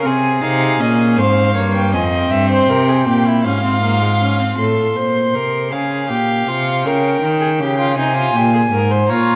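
Solemn and serious, this passage cut from a longer baroque-style fugue for string quartet moves in a straight 6/8, played by single bowed players with period-style, gut-string tone. The first violin carries the melody high in its range with a light vibrato, while a darker, nasal second violin sits farther back on the second line. The viola adds distant, reedy accompaniment, dropping out at 4.6 seconds and returning only at 9.1 seconds, as the up-front cello anchors the bass with a rich tone. The harmony turns from F minor chords to A minor at 4.6 seconds, then moves through B-flat minor and E-flat seventh toward A-flat at 8.0 seconds. A moderate concert hall reverb places the quartet in a spacious, resonant setting.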